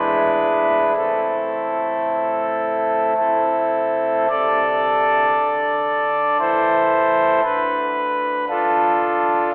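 Grave and dark, this brief excerpt from a longer classical chorale-style piece moves at a slow 52-58 BPM in a straight 3/4, set in A minor. A single pipe organ plays alone throughout, sounding a principal stop with a smooth, baroque voicing that sits up front and spans from a deep E1 up to D5. The harmony opens on E7 before settling onto A minor at 1.0 seconds, shifts to A minor over C as a second section begins at 4.3 seconds, and reaches D minor at 7.4 seconds. A heavy church reverb with a long 2.6-second decay surrounds the instrument, suggesting a church or concert hall. The recording itself carries a narrow, telephone-like tone that boxes in the otherwise resonant space.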